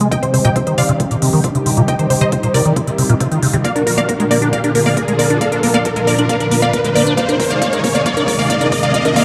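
A dark production set in a moderate concert hall reverb frames this bittersweet, soaring uplifting trance build-up at 136 BPM, cut from a longer piece, with sidechain pumping on the lead, pad and bass as the chords move from Cm to Bb to Ab. Up front, a detuned, wave-folded unison pluck carries the melody with 12-bit sampler grit and digital delay. A silky, evolving analog string pad holds sustained chords under ensemble chorus, and a squelchy, resonant liquid acid bass runs arpeggios through a filter sweep. Crisp, overdriven electronic hi-hats play alongside a punchy, tape-warm electronic kick that sits in the background, with a drum fill from 3.6 s while an electronic riser climbs from 0.1 s to the end.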